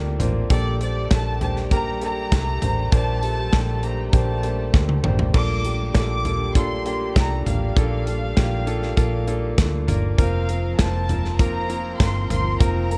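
A reedy, gut-string violin section carries the melody from 0.5 seconds in this anthemic, uplifting piano-driven pop excerpt, backed by an intimate grand piano with audible action noise and a round, foam-muted electric bass. A punchy, up-front drum kit with bright cymbals enters at 0.2 seconds and plays a fill at 4.7 seconds, while a lush, distant string section holds very quiet chords and a French horn section sits in the background on a second line. The dark, dry production moves through Bbmaj7, Gmadd9 and Fsus4.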